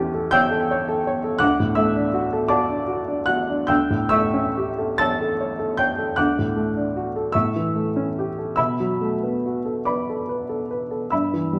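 Swaying in a slow 12/8 at roughly 45-56 BPM counted in dotted quarters, this romantic nocturne moves with a loose, breathing rubato that lends it a dreamy, nostalgic air. A baby grand piano carries the music alone from start to finish, its tone warm, present and close, spanning from D2 up to A6. Set in D major and tuned to A4 = 436 Hz, the harmony rocks gently between dominant and tonic, moving from A7/E to D at 1.4 seconds before touching B minor seventh at 8.6 seconds. A moderate recital hall reverb surrounds the instrument, and the production stays dark, its highs rolled off well before the top of the hearing range. This brief passage is taken from a longer piece.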